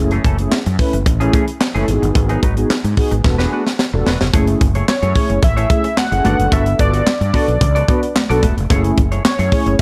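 Funky and late-night, this early-eighties boogie funk excerpt grooves at 110 BPM in a straight 4/4, moving from F# dorian into F# minor over chords such as F#m9, G#m7, E9sus4 and Gmaj9. A tight funk kit with a high-tuned snare, handclaps and hi-hat sits up front beside a round, punchy fretless bass with tube saturation, while a clean, compressed semi-hollow guitar riffs through analog chorus and dark, detuned synth brass pads the chords with vibrato. After a drum fill at 3.2 seconds, very quiet, high-tuned congas join at 4.6 seconds, and a fat, warbling vintage analog lead with a sub octave carries the melody from 4.9 seconds in a light studio ambience.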